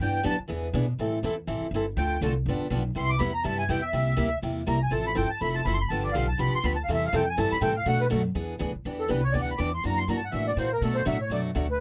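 A reedy, sweet accordion with light tremolo tuning carries the melody as a solo throughout this swinging, bittersweet clip of acoustic string swing in A minor, moving briskly at 244 BPM with a light eighth-note swing. Behind it, a bright, boxy parlour-style steel-string guitar picks the accompaniment through changes like Am7, Dm7, G7 and Cmaj7, while a woody, thumpy gut-string upright bass plays pizzicato underneath. All three sit up front in a dry, close and detailed recording that carries some lossy compression artefacts, and the clip is cut from a longer piece, ending at 11.8 seconds.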